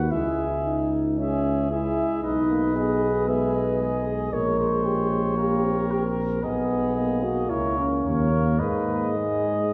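Heard from further back in a reverberant scoring stage, this short cut from a longer classical brass quintet piece carries a grave, heroic bearing with a freely rubato pulse. A mellow, distant trumpet carries the melody, joined at 0.1 seconds by a second trumpet line with a soft attack. The French horn gives punchy accompaniment with light vibrato and a smooth top, sounding the most prominent of the voices. A very quiet, close-miked trombone fills in the middle of the texture, while the bass trombone sits up front, anchoring the low end. The harmony moves through dark minor chords and tense diminished chords before a bare open fifth leads to a final minor chord.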